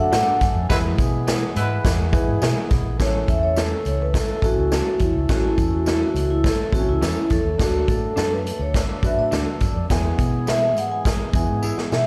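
Uptempo 1960s-style soul with a danceable, warm feel, heard as a short cut from a longer piece played live through a club PA in a small room. A mellow, airy vibraphone with soft mallets and slapback echo carries the melody and takes a solo from 3.0 seconds, over a boxy concert grand piano in the background, a lightly overdriven tonewheel organ with key click and lush chorus holding sustained chords, a round, foam-muted electric bass, and faint slightly broken-up guitar stabs through a small old amp. A punchy big-band drum kit sits up front with a jingly tambourine behind it, a clear horn section with octave doubling adds a brief second line between 0.7 and 2.0 seconds, and a drum fill closes the cut at 11.6 seconds.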